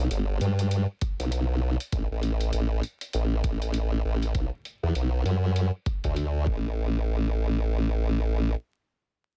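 A saturated, up-front formant-sweep wobble bass carries this playful, funky glitch hop fragment at 99 BPM with a 16th-note swing, joined by a gritty, pitched-down, low-pass-filtered electronic hi-hat and a thumpy electronic kick drum that enters at 1.0 s, both sampler-style and re-recorded in a large room, before the hats fall away at 6.3 s and the kick at 6.6 s, leaving the bass alone to 8.6 s, all within a dry, dense, heavily limited master dusted with vinyl crackle.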